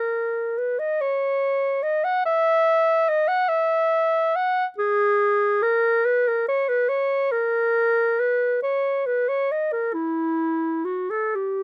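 A warm solo clarinet sings a mournful, meditative classical line alone in a free, expressive 6/8 with uneven, rubato beats, its voice moving between E4 and F#5, placed up front by close, detailed microphones in a dry room, in this 11.6-second excerpt from a longer piece.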